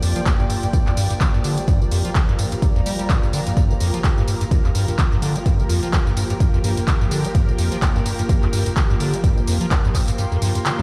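Gritty and driving, this acid house excerpt runs at 127 BPM in 4/4 with a 16th-note swing of 57%, sitting in G minor on a single Gm7 chord. A deep, rubbery acid bass carries the riff with a resonant square-wave filter pluck, dark and decaying, roughened by overdrive, subtle chorus, cassette tape character and analog delay, all pumping against the sidechain. An up-front, punchy electronic kick enters at 0.3 seconds and drops out at 10.2 seconds, while a tape-toned analog drum machine supplies handclaps, hi-hat, tambourine and toms throughout. Above them, a lush unison sawtooth pad holds sustained chords, thick and airy with detuned voices, a noise layer, chorus and phaser giving it a bright sheen. Further back, a granular cloud pad of detuned sines drifts in a blurred, evolving, mellow haze with its own built-in reverb. The whole mix carries light digital ambience and sounds as if played on a big sound system in a bare stone room.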